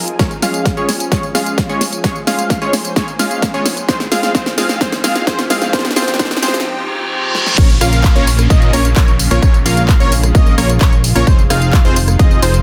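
Euphoric and uplifting, this excerpt of festival progressive house runs at 130 BPM in a straight 4/4. For the first 7.6 seconds it builds, with filter sweeps moving across the punchy, detuned supersaw stab riff, the nasal, warbling unison lead arpeggios and the lush, slow-attack pad chords, while a drum fill runs and riser and reverse-cymbal effects sit very quietly beneath. The chords move from Db to Ab6 before a short break, and then at 7.6 seconds the drop lands on Bbm, moving to Fm7, as a fat, saturated analog bass enters prominently in the mix and pumps against the kick. Throughout, the up-front electronic kick leads a big-room kit of huge snare, handclaps, hi-hat, rim click, tambourine and crash cymbal, and the lead and stab both carry sidechain pumping and dub echo. Light reverb and digital ambience give some space, and the master is dense and heavily limited.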